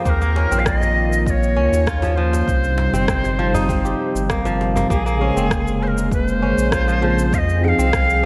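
Warm and earthy, this organic downtempo excerpt sets a breathy, reedy cedar flute up front over a sawtooth analog pad with chorus and sidechain pumping, crisp fingerpicked kora arpeggios, a round sine sub bass, a deep layered electronic kick, electronic cabasa and rim click, and a tight, cracking djembe in the background until 4.9 s, after which a mellow felt-muted upright piano with audible action noise enters at 5.2 s, all within a dreamy, reverb-soaked mix.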